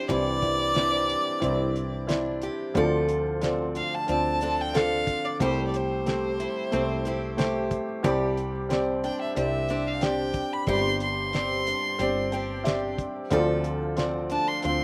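Dry and close, with almost none of a room's sound around the players, this melancholic, intimate acoustic folk-pop ballad in a straight 4/4 moves through chords such as Cadd9, Dm7 and Gsus4. Up front, a rich, smooth violin with vibrato carries the melody, while a felt-muted upright piano adds mellow accompaniment touched by slapback echo and a picked, boxy ladder-braced acoustic guitar with old strings plays arpeggios. Beneath them, a growly, round fretless electric bass and a cloth-damped, muffled drum kit of hi-hat, kick and fat snare, gritty and lo-fi, enter at 0.1 seconds and hold to the end.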